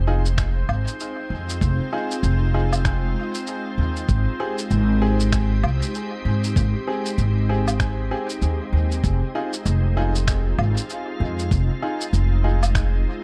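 Ambient dub at 97 BPM in F minor, deep and meditative, this short cut from a longer piece sits on a swung 16th-note groove as a woody, up-front pizzicato upright bass and a muffled, thumpy, pitched-down electronic kick anchor a soft, organ-like pad holding Fm7 and Abmaj7 chords under ensemble chorus. Clear upright piano stabs with audible action noise ring through dub echo alongside a compressed electronic shaker, finger snaps and woodblock, also echoed. A glassy texture of drifting overtones hovers in the background until about 9.1 seconds, all within a dark, warm production carrying a faint mains hum.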